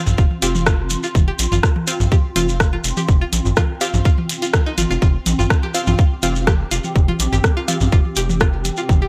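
A straight 4/4 pulse is anchored by a tight, layered electronic kick that sits up front. Around it sit a garage kit's bright hi-hats and rim clicks, analog-toned electronic toms and a grainy, saturated shekere. Beneath them, a rubbery, hollow square-wave bass bounces with sidechain pumping, its nasal tone kept mellow and sustained. A twangy, string-like resonator pluck carries the riff, thickened by chorus and echoed by digital delay. Crisp wavetable chord stabs, also delayed, cut in between 0.4 and 7.8 seconds. Farther back, a dark, blurred granular cloud pad evolves under its own reverb, ensemble chorus and pumping, shaping a clinical, sparse minimal techno excerpt with light reverb and a 1980s-style digital sheen.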